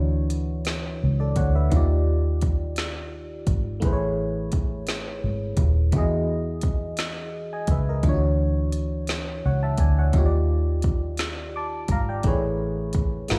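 Sensual and warm, this slow six-eight R&B piece moves at 57 BPM in a straight feel, cut from a longer performance and heard as a live gig through a venue's PA with club reverb. A glassy FM electric piano carries the accompaniment with a bell-like attack and a warbling, vintage tone, its chorus and slapback echo giving the maj9 chords a shimmering halo as they drift from Dmaj9 to Ebmaj9, Amaj9 and Emaj9 before circling back. Beneath it, a vintage muted fingered electric bass sounds dark, round and punchy, its foam-muted, amped tone sitting up front in the low register. The smooth R&B drum kit enters at 0.3 seconds, an electronic, produced kit with a soft kick, woody snare and silky hi-hat, tape-colored and re-recorded in a large room. Piano, bass and drums all sit up front in the mix, set against the digital club ambience for an intimate late-night atmosphere.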